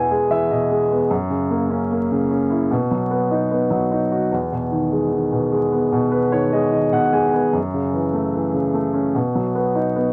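A baby grand piano plays alone from the first second in this short, melancholic folk passage cut from a longer piece, moving unhurriedly through chords such as F#7, Emaj7 and F#m7 in a straight, reflective 4/4. The piano sits up front with a natural, warm tone and long sustain, spanning from deep bass tones to clear upper ones. A moderate studio ambience and a layer of vinyl crackle give the recording an intimate, aged character.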